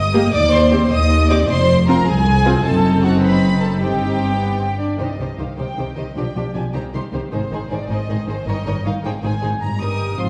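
Bowed violins, cellos and double basses start together in this lively, spirited classical-period movement for string orchestra in 6/8, with the violas joining at 0.1 s. One violin section carries a rich, intimate melody with light vibrato and a soft sul tasto attack over a pure, floating second violin line and warm violas, while the cellos sit close in the background and the dark, woody double basses sound distant and lush. The string orchestra is heard from further back in a scoring-stage reverb, and the music shifts to a new section at 5.0 s in this fragment cut from a longer piece.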